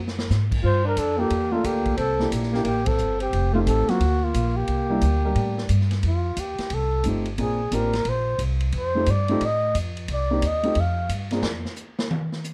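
Lightly reverberant and darkly produced, this short cut from a longer piece is playful small-group jazz swinging at 178 BPM in F major. A woody pizzicato upright bass sits up front, a distant, roomy drum kit with a punchy kick drives the beat, a mellow vintage upright piano comps underneath, and a breathy alto saxophone with subtone and scooped notes plays a second line until 5.7 seconds. The whispered, intimate trumpet, close and up front with vibrato and plate reverb, carries the tune and takes a solo from 6.0 seconds, and a drum solo closes the passage from 11.4 seconds.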